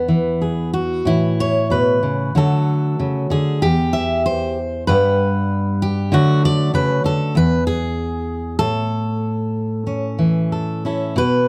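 Closely miked with light reverb and detailed, up-front presence, this short, gentle and hopeful folk excerpt in A major features a solo fingerpicked steel-string jumbo acoustic guitar with a full-bodied tone, moving with a rubato feel around 95 BPM in 4/4 through E, A, D and G chords interspersed with brief chordless passages.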